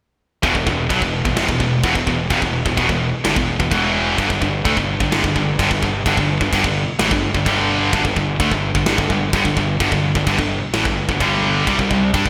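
A bright, 1980s-style digital production sits in a lush hall reverb, giving this short heavy metal excerpt a big, polished sheen. At 128 BPM in a straight 4/4 and E minor, the mood is aggressive and relentless, with the full band entering together at 0.4 seconds and driving through to 12.3 seconds. A big acoustic rock kit sits up front with a punchy kick, a medium-tuned snare, bright crash cymbals and gated reverb. Beneath it, a round, overdriven fuzz bass played with a pick gives the low end a punchy growl. Two picked, distorted electric guitars, one tight and one heavy and high-gain, play the riff further back in the mix, while a very quiet, double-tracked fuzz guitar adds a warm, fuzzy layer. The riff moves from E5 to G5 at 4.2 seconds and lands on C5 near the end.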